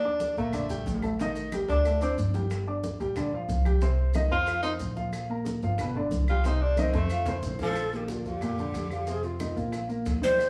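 A straight 4/4 groove at 183 BPM drives this lively, sophisticated Afro-Cuban jazz in Bb major, where a dark, intimate baby grand piano with audible action noise and a woody pizzicato upright bass sit up front, thick-skinned congas, tight high-tuned bongos and close, dry claves stay in the background, grainy maracas add texture, a breathy tenor saxophone with scooped notes solos through the opening 7.8 seconds, and a hollow, end-blown bamboo shakuhachi with vibrato and chiff takes the melody from 7.6 seconds inside a moderate large studio reverb.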